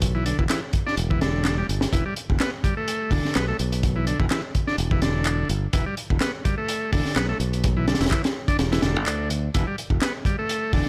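A crunchy breakbeat drum kit and a growly fingered electric bass open this funky, gritty breaks excerpt together, both sitting up front. The kit has a dark, saturated character with a rolled-off top, a punchy kick and a high-tuned snare, while the groove carries a light swing on the sixteenths. The bass sounds bright and direct, holding down the low register on a single minor chord. Almost at once a buzzy vintage combo organ joins with a riff, its light vibrato tone kept clean but colored by tube saturation, 12-bit sampler grit and a digital delay. Layered, tape-warm electronic handclaps come in at 0.5 seconds and sit further back, dropping out at 10.1 seconds, with a studio reverb lending the whole groove some room.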